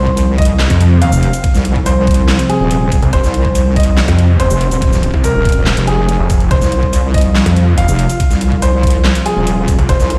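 A snarling, distorted saw bass dominates this chaotic, heavy slice of wobble dubstep, its growling, aggressive tone sitting up front from 0.7 s. Beneath it, a square-wave wobble bass adds saturated, detuned weight with chorus and overdrive, while a knocking electronic kick anchors the half-time feel at 142 BPM in F minor. A produced dubstep kit of huge snare, metallic hi-hats, handclaps and shaker carries a tape-warm sheen. Above the low end, a clear, vintage grand piano plays a melody through tape echo, and a dark, woody string section holds lush bowed chords in the background, pumping against the sidechain under a low-pass filter. The whole fragment, cut from a longer piece, sounds as if played on a big sound system in a bare room, ringing with stone reverb.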